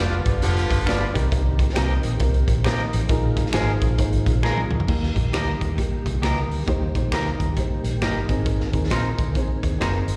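Uptempo 1960s-style soul at 134 BPM with a swung, joyful feel in Eb major, cut from a longer piece and heard as a live gig through the venue's PA, where a punchy, octave-doubled horn section sounds only in the opening 1.1 seconds over a dark, woody upright piano, a smooth tonewheel organ with key click and slow rotary speaker in the background, twangy, slightly broken-up guitar stabs with harmonic tremolo, a round, foam-muted electric bass, a gritty, boomy garage drum kit up front that enters at 0.3 seconds and plays a fill before the second section at 4.9 seconds, and close finger snaps with slapback echo.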